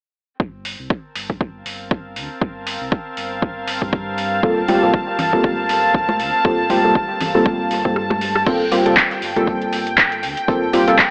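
A mellow, chorus-soaked chord stab with tape echo and sidechain pumping sits up front from 4.4 s in this hypnotic, smooth deep house excerpt, built on a Gm11 chord. Beneath it, an overdriven electronic kick and a layered house kit of crash, handclaps, metallic hi-hat and rim click drive a swung groove, while a deep sine sub bass with octave pumps under a filter sweep and a reedy, gut-toned string section fades in, joined by a clear, bowed violin section and dry congas in the background. After the kick drops out for a drum fill, a very quiet brushed jazz kit enters at 8.5 s, and the whole mix carries an AM radio colour through a moderate plate reverb.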